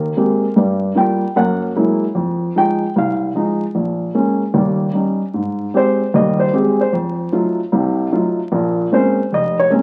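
Jazz for solo piano, moody and swinging at 151 BPM in 4/4 with a firm swing on the eighth notes, heard in a short passage cut from a longer piece. A dark baby grand carries everything from 0.0 to 9.8 seconds, ranging from F1 up to G5, with a mellow, intimate tone, short sustain and the audible noise of its action sitting up front. The harmony opens in F minor, moving through Abmaj9, Gm7, Gb9 and Fm7 before a Bbm7 to Eb7 turn leads into Ab major at 5.3 seconds. That second section settles on Abmaj7, then colours it with F7b9 and lands on Bbm9. The sound carries the patina of a very old 78 rpm record, with vinyl crackle over a moderate large-studio reverb of about 1.1 seconds, and the tuning sits slightly flat of standard pitch.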